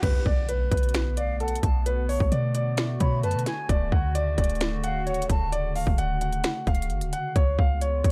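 A half-time trap groove drives this brooding, hard-hitting hip hop excerpt, with an up-front electronic kit of hard-clipped kick, sharp snare, crisp hats, finger snaps and crash cymbal over a deep, boomy, clean 808-style bass. A dark, mellow concert grand piano carries the melody through digital delay, while a hollow, airy pad with chorus holds sustained chords over a Bm7 to Dmaj7 to C#7 progression. A very quiet riser and impact open the cut until 1.9 seconds, and a breathy jazz flute with vibrato sits in the background as a second line from 1.2 to 6.9 seconds, all within a dry, dark production.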